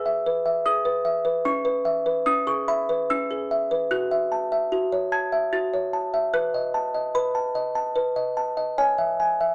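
Classical lullaby for a lone music box, this short passage is cut from a longer piece and carries an innocent, tender mood. It moves in a gentle 3/4 at around 74 BPM with a rubato feel, and the instrument is tuned slightly high, to A4 = 443 Hz. The music box sounds delicate and tinkling, with the plucked tone of a large, vintage mechanism, band-limited in character and placed up front. It spans from C#4 up to A6 across the full 9.5 seconds. The harmony drifts from E/G# through C#m7, F#m7 and B7 before settling on C#m at 8.8 seconds, all heard in a moderate studio ambience.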